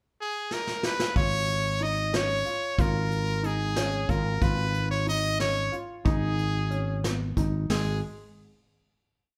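Set in a straight 5/8 at 184 BPM counted in eighths, this driving, brooding progressive instrumental opens with a brilliant, punchy trumpet delivering a forceful, motif-based solo with vibrato from 0.2 seconds, joined by a distant, roomy brush drum kit whose fill at 0.5 seconds leads into a growly fretless electric bass and a warm grand piano ostinato of short-sustain arpeggios at 1.2 seconds, moving from C#add9/G# to G#m before closing on a final note, with the band playing live in one large studio room with moderate reverb.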